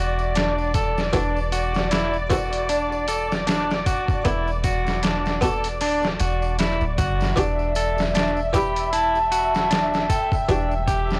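A brooding, smoky trip hop excerpt at 77 BPM in E minor opens with a muted, lute-like buff-stop harpsichord carrying tremolo and tape echo, veiled con sordino strings holding sustained chords, clean picked electric guitar arpeggios through tape echo, and a deep, round 808-style bass, soon joined by a ringing tambourine in the background and a gritty, up-front sampler-style drum kit with a thumpy kick and overdrive. Moving from Em9 through D13/E and Bm7/E with a swung 16th feel, the groove sits in small-room ambience on a blown-out recording dusted with vinyl crackle. At 7.4 seconds a metallic vibraphone played with hard mallets takes the melody, its fast motor vibrato trailing dub echo.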